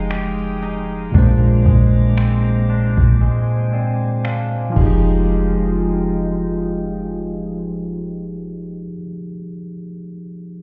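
A slow 58 BPM groove in 4/4 with a light 16th-note swing carries this moody, late-night contemporary R&B fragment in F dorian, where an overdriven electronic drum kit of soft kick, crisp hi-hats, finger snaps and crash cymbal drops out at 5.0 s beneath a round, dark 808-style bass, a bright, bell-like tine electric piano plays a fill during a break from 3.2 to 5.3 s, a shimmering chorused pulse-width pad holds Fm9 and Bb9 chords, and a twangy electric guitar arpeggiates through tape echo, all heard muffled as if through a wall with stone room reverb and lossy compression artefacts under a filter sweep spanning the first 5.3 s.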